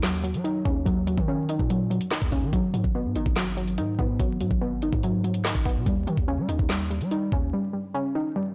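A half-time drill groove at 144 BPM in G# minor sets a menacing, cold mood, with an up-front electronic kit of knocking kick, woody snare, metallic hi-hats and handclaps beneath a deep, long sine-toned 808 bass and a dark, detuned, warbling pluck softened by chorus and a low-pass filter, moving through D#m7, G#m7 and D#7 in a blown-out, overdriven, lightly reverberant mix with vinyl crackle, until the drums and bass drop away and the pluck carries on alone from 7.5 to 8.5 seconds in this cut from a longer piece.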